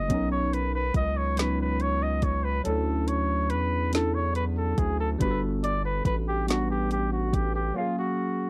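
A dry, close recording in a 1970s studio style carries this short cut from a slow, tender six-eight R&B piece at 47 BPM, tuned to A4 = 441 Hz. Up front, a clear, vintage flugelhorn with vibrato plays the solo through slapback echo. Beneath it, a worn, slightly out-of-tune tine electric piano runs through a combo amp and phaser across Bmaj9, Dmaj9, Gmaj9 and F#maj9, while a round, deep, mellow analog bass and an electronic R&B drum kit with a soft kick, woody snare and warm hats sit close, the drums stopping at 7.5 seconds and the bass at 7.7.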